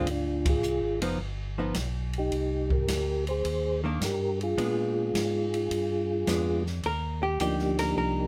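The recording sits in a small, natural-sounding room with light reverb, and the organ and guitar are placed up front. This is a bluesy, greasy soul jazz organ trio excerpt in Eb major, swinging at 106 BPM in 4/4, cut from a longer piece. A soft, flute-like tonewheel organ carries the melody with percussive second-harmonic attack, chorus vibrato and a slow rotary speaker. A second tonewheel organ handles the bass line, fat and clean with audible key click and its own slow rotary spin. A dark, compressed hollow-body archtop guitar provides picked accompaniment, while an acoustic jazz kit of hi-hat, ride, medium-tuned snare and boomy kick keeps time under dusky cymbals. The band hits an accent at 0.4 seconds, the harmony moves from Dm7b5 through G7b13, Cm9 and Bb7b9, and at 6.8 seconds the guitar steps out for a short solo over Ebmaj7.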